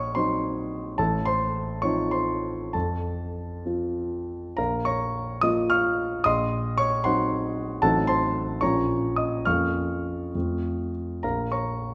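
A solo concert grand piano sits up front in a wet recital hall, its tone warm with a deep bass and short sustain, while the hall's reverb, with an RT60 of 1.5 s, rings on around it. This is a romantic classical character piece in Bb minor and 6/8, taken from a longer work, with a brooding, stormy mood. The tempo moves freely with rubato, ranging from 63 to 78 BPM counted in dotted quarters. The piano covers a broad span from A1 to F6 and plays alone across the full 11.9 seconds. The opening phrase hovers over a Cm7b5 chord above a Bb bass before resolving to F. A second section begins at 4.6 seconds on Bb minor, passes through Adim7 and Bbm over F, then settles back on F before closing on Bb minor at 11.2 seconds.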